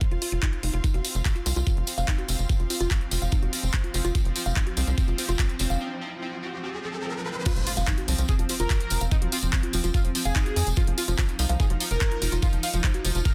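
A knocking electronic kick, re-recorded in a small room and placed up front, drives this alien, psychedelic trance excerpt. Alongside it run a tight, punchy sawtooth sequencer bass, an overdriven big-room kit of crash, handclaps and hi-hat, and a close, jingly tambourine. Bright bowed strings fade in beneath a woody, wave-folded pluck riff with chorus and digital delay, plus a pulsing gated chord texture with chorus and reverb, all three pumped by the sidechain; a riser carries into a break at 5.8 seconds, and the drop lands at 7.5 seconds with an electronic impact and a thick, detuned unison lead, bright with vibrato, phaser and delay, in a dense, heavily limited master.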